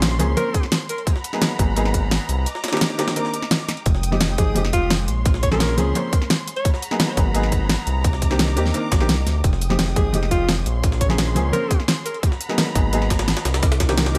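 A straight 4/4 pulse at 172 BPM drives this dreamy, rolling liquid drum and bass excerpt, with a tight electronic kick entering at 0.5 seconds under a layered pop kit's fat snare and crisp hats, while a gritty, pitched-up jungle sampler-style kit with a high-tuned snare sits in the background behind a high-pass filter. Underneath, a smooth synth bass blending sawtooth and square tones sits up front, sustained and evolving with vibrato, between F1 and Eb2. A soft, felt-muted upright piano plays mellow, intimate accompaniment with short sustain and tape echo. A lush symphonic string section holds bowed chords with soft attack and expressive vibrato. A breathy alto saxophone with a smooth top and light vibrato adds brief melodic phrases through digital delay, first a short figure at 0.4 seconds and then phrases around 4.4 and 10.0 seconds. The harmony cycles through minor ninth chords, Bbm9, Abm9, Cm9 and Fm9, in a fairly dry mix.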